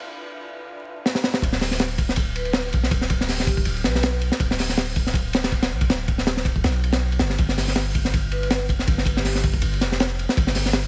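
A crunchy breakbeat drum kit, gritty and saturated with a punchy kick, high-tuned snare and dark cymbals, drives this raw, frenetic drum and bass and jungle excerpt. A lush, detuned sawtooth pad with chorus holds a Dm69 chord at the opening, and the drums enter with a fill at 1.1 seconds before the drop at 1.4 seconds, where a deep, sine-like 808-style bass with tube saturation takes over beneath the kit. A metallic, ringing vibraphone with dub echo sits in the background, playing brief melodic phrases over G/D and Fsus2 chords, all under a dry sound and a layer of vinyl crackle.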